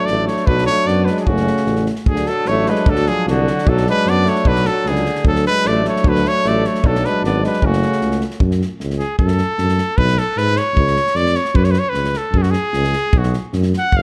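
Virtuosic and fiery, this Balkan brass band excerpt drives along at 152 BPM in a straight 2/4 in F# minor, with a clear, classical-style trumpet melody up front over a mellow, softly attacked tuba bass and a punchy kick and medium-tuned snare from an airy, polished acoustic drum kit. A vibrato-laden alto saxophone carries a smooth second line while a bright trombone and dark euphonium sit in the background as accompaniment. Those three drop away just after 8.2 seconds, and at 8.4 seconds the trumpet takes a solo over chords moving through Amaj9/B, C# and F#5, all under light reverb in a dark production.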